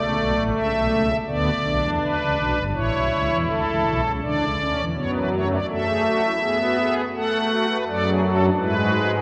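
Stately yet lively, this brief excerpt from a baroque-style three-part fugue is a classical piece for solo pipe organ in a straight 4/4. The organ speaks through soft, shimmering string and celeste stops in a romantic voicing, sitting up front and spanning G1 to F#5, with its harmony moving from D through Em7 and A, back to D and onward toward E/G# by 8.6 seconds. A cathedral reverb with a 4.8-second decay surrounds the playing, which is cut off at 9.2 seconds.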